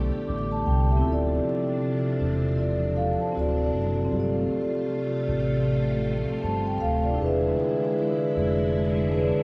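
A mellow, close-miked vibraphone played with soft mallets, its motor off, opens this melancholic, hazy lo-fi hip hop fragment together with lush, vintage string-machine chords treated with phaser and ensemble chorus, while a deep sine sub bass with an added octave anchors the low end until 9.3 s. The swung sixteenth-note feel carries a chord movement from A7sus4 through Dm7, D7 and G9sus4 to E7. The whole dreamy mix is steeped in a cathedral-sized reverb and vinyl crackle, with the vibraphone sitting dry and up front against the sustained string wash.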